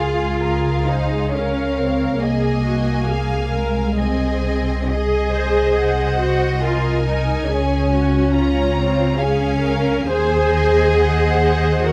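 Unhurried triple time with uneven, rubato-shaped beats carries this tender, serene slow romantic movement for string orchestra, cut from a longer piece. Violins sing the melody with smooth vibrato while a second violin line sits intimate and close beneath, rich viola accompaniment fills the middle, and a focused cello section joins soft-attacked, up-front double basses to anchor the bass, all five sections bowed together throughout the 11.9 seconds. Light reverb and vinyl crackle lend the lush studio ensemble a gently aged sheen.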